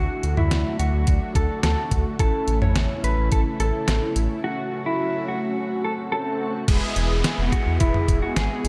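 A tape-warm 8-bit drum machine with a thumpy kick, recorded in a large room and up front, drives this nocturnal synth-pop excerpt alongside a dark gliding sawtooth bass, while a clean, compressed electric guitar carries the melody through digital delay and shimmer reverb over brassy, phased synth brass and a vintage string-machine cello pad in the background that stops at 6.7 s, with a swell and downlifter entering at 5.9 s.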